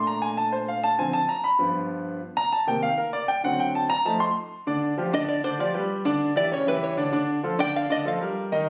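A clear concert grand piano opens this short, lively jazz excerpt at a brisk 196 BPM in straight 4/4, its natural tone reaching from deep bass notes up into a clear upper register as it takes the first solo passage. Up front in the mix, the piano moves through changes such as Bbmaj7, Dm7b5, G7 and Cm7 before settling on F7. At 5.1 seconds an open-back five-string banjo enters with the melody, its fingerpicked lines sounding twangy, plunky and percussive in a fairly high range. Acoustic and close at hand, the banjo carries the second passage over chords including Dmadd11, Em7 and C#m7b5, while the piano continues beneath it to 8.7 seconds. The danceable performance sits in a moderate studio reverb and was recorded on a phone in the room.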